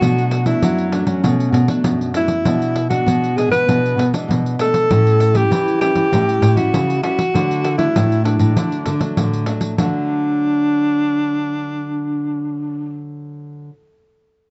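A dark, lightly reverberant production frames this playful, joyful samba-and-choro fragment in D major at 98 BPM, where a breathy, close-miked alto saxophone carries a jazz-style melody with vibrato up front over a fingerpicked classical nylon-string guitar with fresh strings, while a second fingerpicked nylon-string guitar holds the bass and a jingly, dry pandeiro drops out at 9.9 seconds as the chords move from Bm7 through E7/B and A7 to D.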